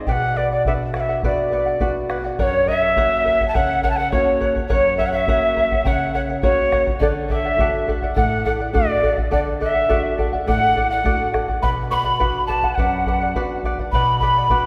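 Fingerpicked charango, its shimmering double strings warm against a small, dark nylon-string guitar, opens this wistful, melancholic Andean folk excerpt at a straight 104 BPM. An airy cane quena with vibrato sits up front on the melody and a deep, dry bombo keeps the beat. At 2.4 s a soft-attack wooden pan flute joins as a second line over F#, D and a return to Bm, all bathed in a long church reverb.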